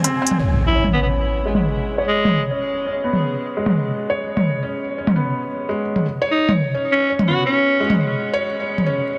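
Half-time drum and bass at 170 BPM with a light 16th-note swing drives this tense, heavy piece, its overdriven electronic kit, with smooth, filtered hats and toms, sitting up front as if re-recorded in a small room. A felt-muted upright piano plays mellow arpeggios over G#madd11, its thin felt and audible action noise passing through a filter sweep and digital delay, while an electronic impact hits at 0.4 s and the effects return briefly at 8.9 s. A growling alto saxophone carries the melody in two raspy, breathy phrases with vibrato and tape echo, entering at 0.7 s and 6.3 s, inside a huge ambient reverb and a dense, heavily limited master.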